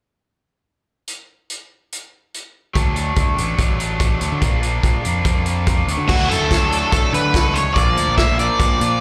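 Indie rock at 144 BPM in a straight 4/4, this upbeat, jangly excerpt is cut from a longer piece and sounds like a live gig heard through a club PA, soaked in venue reverb. A vintage acoustic drum kit opens alone at 1.1 seconds with crash, hi-hat, a punchy kick and a medium-tuned snare, sitting natural and up front. A raw, bright garage guitar with overdrive and slapback echo enters on a picked riff, joined at 2.8 seconds by a growling fingered bass, overdriven and amped, as the harmony moves from D to Bb and back. At 6.1 seconds the music lifts onto Dadd9 and then Bb, bringing in a crunchy second guitar riff colored by analog chorus and slapback echo. Over it, an up-front octave-fuzz lead guitar carries the melody with a dark, distorted tone and its own slapback echo.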